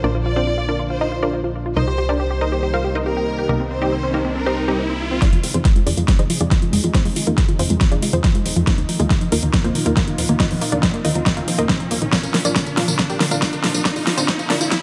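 A dark, lightly reverberant production with digital ambience frames this euphoric, driving uplifting trance excerpt in F dorian at 139 BPM, where a detuned unison pluck with sidechain pumping and delay carries the melody over a thick chorused pad and a punchy, wave-folded analog bass, while a close, bowed violin section with vibrato plays a second line until 4.8 seconds, a riser enters in the background at 3.0 seconds, and at 5.2 seconds a round analog pluck arpeggio, an electronic kick up front and an overdriven big-room kit with huge snare, metallic hi-hat and tambourine arrive amid filter sweeps, a drum fill and a build-up.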